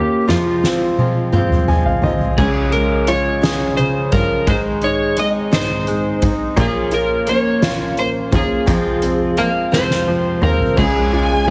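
An up-front electric slide guitar, fingerpicked and slightly broken-up, carries the melody of this swaying, romantic six-eight pop ballad at 57 BPM, cut from a longer piece and tuned a little flat. From the start, a clear vintage grand piano with deep bass provides accompaniment while a woody, old-stringed dreadnought acoustic guitar plays arpeggios. At 0.3 seconds they are joined by a bowed cello bass with smooth vibrato and a boomy, fat-snared drum kit played with soft mallets, which adds fills as the piano slips in one of its own. The mix is heavily compressed with a radio-like tone and light small-room reverb, and a dark, lush, distant violin section enters at 10.8 seconds with a high note over the return to Db.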